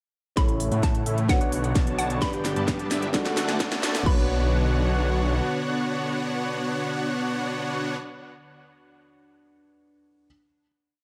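Anthemic and powerful, this short festival progressive house piece in B minor at 130 BPM opens with a build from 0.4 s, as a punchy four-on-the-floor kick, cracking snare and crisp hats drive a drum fill while a huge, detuned supersaw riff plays dotted-rhythm chords through a filter sweep, over a menacing, beating saw bass, a hollow, bouncy square pluck melody, a lush, warbling unison pad and a very quiet riser from 2.5 s. At 4.1 s the drums drop out and a final Bm(add9) chord rings, with the pluck, the pad and the supersaw ending at 8.0 s. A dark, boxy concert grand piano with vintage 12-bit grit and sidechain pumping carries on alone until 10.3 s, all of it soaked in dreamy plate reverb.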